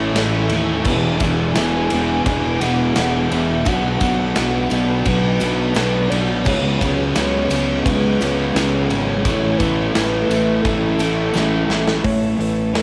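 A hazy, blissful shoegaze and dream pop passage in A major at 86 BPM opens on a thick bed of guitars. A bright, double-tracked overdriven electric and a warm hollow-body semi-hollow with reverse reverb play riffs in the background, while a dark fuzz guitar adds a faint riff of its own and a clean, twangy twelve-string traces compressed arpeggios. Beneath them, a round fingered bass with fuzz and transformer saturation anchors the low end, and a barely audible vintage string machine holds shimmering sawtooth violin chords with a slow attack. Floating on top, a soft sine lead with a sub octave carries the melody, its vibrato and portamento smeared by chorus, tape echo and cassette grit. A big acoustic rock kit with a punchy kick and medium-tuned snare joins at 0.2 s alongside a jingly, very quiet tambourine, and a drum fill at 11.3 s closes the section as the chords cycle from Amaj7 through E7, Bm7 and C#7sus4 back to Amaj7, all set in light reverb and small room ambience with a home-cassette feel.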